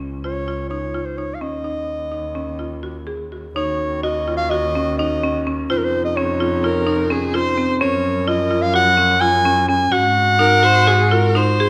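A close-miked solo clarinet carries the melody in this playful, restless piece of contemporary chamber music, cut from a longer work and set in an uneven 9/8. Beneath it, a buzzing, woody marimba struck with hard mallets plays dry arpeggios while a single bowed double bass holds a focused bass line. A clear woodwind section with light vibrato enters in the background with sustained chords at 3.5 seconds, and at 6.6 seconds a rich, expressive viola adds a second line with vibrato and portamento, all within a moderate concert-hall reverb.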